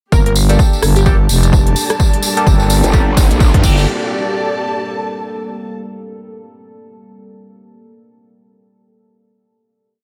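A thick, overdriven growling FM bass drives this gritty, aggressive bass house build in G minor at 128 BPM, joined by a punchy four-on-the-floor electronic kick, a big-room dance drum kit of crisp hats, rim click and crash with a drum fill, jingly tambourine sixteenths, nasal band-passed chord stabs under a filter sweep with phaser and tape echo, a brief plucky unison lead, a dark studio string section with vibrato and portamento, a deep, moody ambient pad entering at 1.7 seconds alongside a background riser, and a wobbling, saturated growl bass at 2.8 seconds, before the strings hold a final note to 5.7 seconds.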